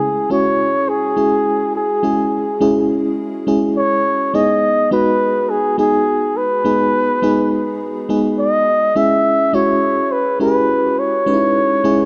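Glossy and uplifting, this short pop excerpt moves at 104 BPM in a straight 4/4, with a breathy, whispered flugelhorn carrying the melody up front, its soft attack and vibrato giving it an intimate tone. Beneath it, an FM electric piano layered with a soft pad supplies lush, dreamy accompaniment, its detuned, decaying notes colored by chorus and tremolo. The harmony moves from C#m to G#m and back to C#m, all set in a moderate plate reverb with a 2.7-second tail.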